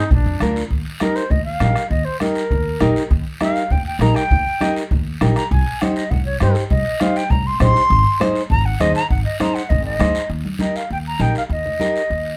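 A modest small-room reverb surrounds this joyful, sunny cumbia, cut from a longer piece and played live by a band together in one space. Up front, a pure, straight-toned concert flute carries a tongued solo from 0.7 to 10.3 seconds over a dark, fingerpicked nylon-string guitar and a woody, growly pizzicato upright bass. Beneath them, a close, dry bombo struck with a soft beater, thick-skinned congas played with soft hands and a raspy guiro fill out the percussion.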